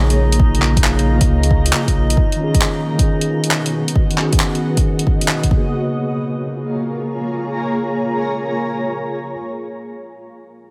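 A mellow tine electric piano, run through a filter sweep and dub echo, opens this nocturnal, wistful future garage passage at 135 BPM in Bb phrygian, over a blurred, detuned granular cloud pad, a round dub sub bass that drops out at 2.2 seconds, and a drifting glassy harmonics texture with chorus. A deep house kit of handclaps and swung hi-hats joins with a deep, tape-touched electronic kick sitting up front, both ending near 5.6 seconds. The piano, pad and bass pump against the kick as the chords move from Bbm7 to B69 and back, before the pad lingers alone to the close.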